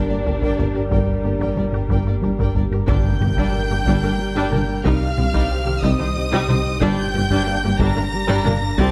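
A tense, futuristic hybrid orchestral and electronic film cue in G minor at a slow 61 BPM in 6/8, where lush bowed violins carry the melody over a second violin line, focused violas, a mellow French horn section, an evolving chorused wavetable pad and a squelchy blip pluck arpeggio, all grounded by a gliding synth bass riff, round sub bass, distant cellos, double basses and tuba, with hard-stick taiko drums entering at 0.3 seconds, a very quiet electronic impact at 2.9 seconds, and the harmony moving from Gm to Cm at 4.8 seconds before returning, all set in a moderate scoring-stage reverb.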